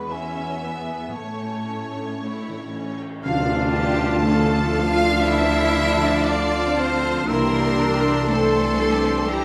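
A wet recital-hall reverb surrounds this sorrowful, moving excerpt of a cinematic film score at 59 BPM with a rubato feel, where distant, intense violins carry the melody and a second line over rich viola, focused cellos and very quiet ringing harp arpeggios, a mellow, hollow flute sounds briefly until 2.2 s, and at 3.2 s the music settles into D minor with a band accent as a soft-attack clarinet, roomy oboe, punchy French horns in the background and smooth double basses join, followed a moment later by a very quiet dark tam-tam.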